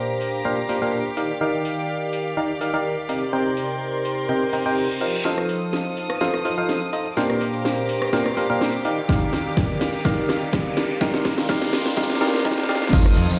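A barking FM electric piano leads this piano house excerpt with a biting, percussive riff, its fast attack and noisy edge sitting up front under chorus, tape echo, sampler grit and sidechain pumping, while a filter sweep works on it from 5.2 seconds through the build-up. Behind it, a rich chamber violin section holds sustained chords with light vibrato and a smooth top, pumping and filtered, giving the bittersweet progression of Bb6/9, Cm7, F7 and Ebmaj9 an earthy, bowed glow. An overdriven house drum kit enters almost at once, with a cracking snare, metallic hats, rim clicks, shaker and cymbals that were re-recorded in a large room, and a reverse cymbal, riser and downlifter in the background lift the energetic build-up and its drum fill. A punchy, overdriven analog kick joins at 9.1 seconds, and only in the final moments do a fuzz-laden fingered bass, a bright vintage tambourine and a faint, gritty electronic hi-hat arrive. 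The mix has a plate reverb and the air of a big sound system in a bare room, with a lightly swung groove that keeps it driving.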